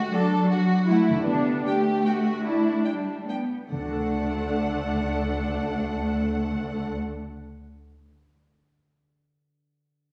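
Festive and sweeping, this short cut from a classical orchestral ballroom waltz in D major moves in 3/4 at 137-166 BPM with a rubato feel, slowing down from 0.7 to 3.7 seconds as the harmony passes from D7 through G/D to rest on D. A rich, intense cello section carries the bass up front, a lush, focused viola section fills in the accompaniment, and an expressive violin section plays the second line with vibrato and portamento, while a second violin section enters at 0.5 seconds with a smooth, even melody. A ringing concert harp plays arpeggios in the background and is the last to stop at 7.8 seconds, with everything heard from further back in a wet recital hall.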